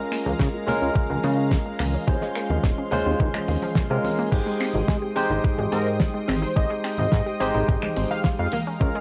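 This short nu-disco excerpt has a dry, gritty hardware sound in a small room, sunny and feel-good at a straight pulse. A bright, barky tine electric piano sits up front through a combo amp, colored by phaser, analog delay and sidechain pumping, while a lush, nasal unison pad holds chords in the background and a punchy detuned pluck plays arpeggios with tape echo. Underneath, a thumpy, overdriven electronic kick drives alongside a damped 70s kit with a fat snare, dark cymbals, hi-hat, finger snaps and crash, plus soft-handed congas and egg shaker tucked behind, and a glossy, chorused synth bass with tube saturation. For the first 4.3 seconds, filter sweeps move across the electric piano and the arpeggio sound over Db6 and Eb13sus4 chords, before a drop lands on Abmaj7. At 5.7 seconds a thick, bold unison lead enters with vibrato, lush chorus and tape echo, carrying the melody until 8.6 seconds.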